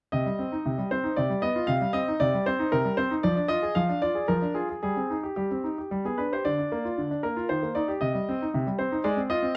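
Dramatic and serious, this short cut from a longer classical-period piano sonatina in C minor moves in a rubato 3/4 at 115 BPM, with a clear, natural concert grand playing solo from 0.1 to 9.6 seconds between C3 and F5, its deep bass up front under close, detailed microphones and light reverb as the harmony passes from Cm through G7/C, Ddim/F, Bb/D and Eb before settling on Fm7/Ab.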